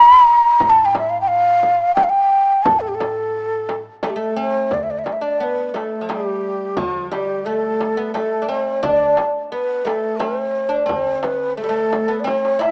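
An Arabic maqam ensemble fragment in a soulful, longing 3/4, led by an up-front, breathy, hollow ney that opens alone before a background pizzicato upright bass, a crisp, saturated metal-shell darbuka and a close, dry frame drum join at 0.6 s, with a woody, plectrum-plucked fretless oud adding a deep second line from 4.0 s, shortly before the mode shifts at 4.7 s, all in a rough home-demo mix with light small-room reverb and a closing drum fill from 12.3 s.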